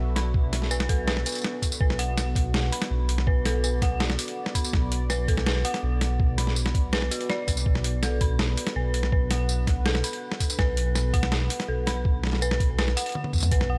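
A dry, heavy mix opens this dark, brooding fragment of half-time drum and bass, running at 164 BPM in B minor and sitting on a single B minor chord as it drops straight into full force from the start. A rumbling, detuned saw bass sits up front, its beating sawtooth, square and sine layers giving the low end a deep, sustained weight. Gritty, pitched-down sampler-style drums carry the groove: a thumpy electronic kick enters at 0.3 seconds, while a compressed kit with a medium-tuned snare, hi-hat, tambourine and toms sits prominently in a small room ambience before a short drum fill closes things out at 13.1 seconds. Above, an eerie FM synth bell plays decaying arpeggios, its inharmonic, warbling vintage tone colored by chorus, tremolo and digital delay. Far in the background, a moody ambient pad holds slow-attack chords with a sub octave, chorus and built-in reverb, pumping under sidechain compression and adding a shadowy haze to the menacing atmosphere.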